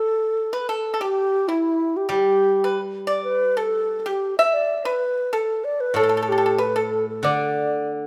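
In a moderate recital-hall reverb, this festive, graceful excerpt of Chinese traditional chamber music unfolds rubato at 94 BPM in 2/4, with an airy, crisp-attacked bamboo xiao carrying an expressive straight-toned melody over a dry, percussive, fingerpicked pipa second line, joined at 2.1 seconds by the bright, ringing, silvery low accompaniment of a fingerpicked steel-string zither, all three parts sitting up front.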